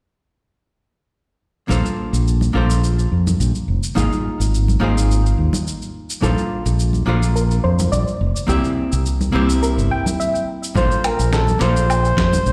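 Sunset chillout in Bb lydian at 106 BPM, this smooth excerpt from a longer piece sets a dark, hollow-bodied archtop guitar with tape echo over an up-front fingered electric bass, gritty overdriven sampler-style soul drums and bright congas in the background, all entering at 1.7 seconds on a Bbmaj9, Ab69 and C7 progression, before a soft round pluck adds chorused arpeggios from 6.2 seconds and a breathy, mellow flugelhorn takes the solo melody alongside a thumpy electronic kick at 10.8 seconds, everything set in a big, bare-room studio reverb.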